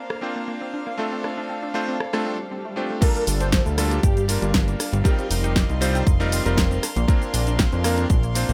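This sunny, feel-good nu-disco excerpt opens with a dark, bowed string section holding sustained chords in the background, alongside a round analog pluck playing arpeggios through chorus and tape echo, both pumping with sidechain. A pop drum kit with a fat snare, hi-hat, rim click, cabasa and crash enters almost at once, followed by a bright, clangy electric grand piano playing accompaniment with its own tape echo. A brief electronic swell at 2.3 s leads into the drop at 3.0 s, where a punchy electronic kick lands up front. At the same moment, a thick, detuned unison lead carries the melody with vibrato and ensemble chorus. Moments later a warm sawtooth analog bass comes in low and up front, under chords that move from Bbadd9 and Dm7 to Gm7 and F7sus4 before returning to Bbadd9, with digital ambience surrounding the mix.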